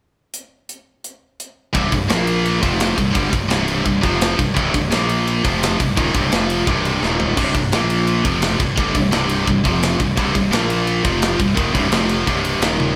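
Relentless and dark, this heavy metal cut runs at 171 BPM in a straight 4/4, centred on C minor and lifted from a longer piece. A tight acoustic drum kit opens alone at 0.3 s, its tight kick and medium-tuned snare sitting up front with crash, ride, hi-hat and toms, and fills land around 7.0 s and again at 12.8 s. At 1.7 s a double-tracked, high-gain guitar enters with a picked, scooped, bright riff ranging from C2 to Bb3, cycling through power chords on C, Bb, F and Eb with brief C minor moments. A fingered electric bass joins at 1.8 s, its fuzz and overdrive giving a growly tone low between C1 and Bb1, sitting a little beneath the guitar in the mix. The whole band sounds as if playing live in one room, wrapped in a moderate studio reverb.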